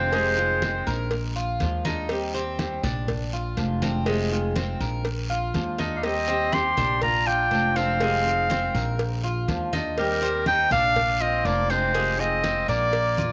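Warm and relaxed, this excerpt of Cuban son and guajira moves at 122 BPM in a straight 4/4, cycling through Fm7, Bb7 and Eb6. A clear, present clarinet leads the melody up front in a classical style, shadowed by a distant, roomy trumpet with light vibrato and scooped notes; both sound briefly at the start, break off at 1.4 seconds and return at 6.0 seconds. Beneath them, a woody, thumpy pizzicato upright bass on gut strings sits up front, while a metallic, double-strung tres picks arpeggios and a dark fingerpicked flamenco guitar accompanies. Low-tuned congas and a round, dry cowbell keep time in the background alongside a raspy, band-limited guiro, all in a light small-room ambience.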